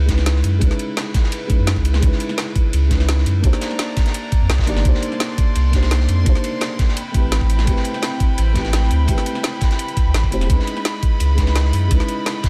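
A small, intimate room sound surrounds this soulful, lush liquid drum and bass passage, cut from a longer piece and running at 170 BPM in a straight 4/4. A felt-muted upright piano carries the accompaniment with a soft, dark tone, thick felt and audible action noise, its notes trailed by delay. Behind it, a chamber string section holds sustained, bowed chords with light vibrato, an earthy body and a smooth top. A deep, round sine sub bass sits up front with a fast attack and mellow sustain, dropping out at 12.0 seconds. At 0.1 seconds the layered drums enter together: an overdriven, knocking electronic kick sits up front, a produced kit adds a woody snare and bright hi-hats, and a gritty, saturated breakbeat kit contributes dark ride cymbals and a medium-tuned snare with a rolled-off top, both kits bathed in studio reverb. The harmony moves from C#m9 through Cm9 and Am9 before returning to C#m9.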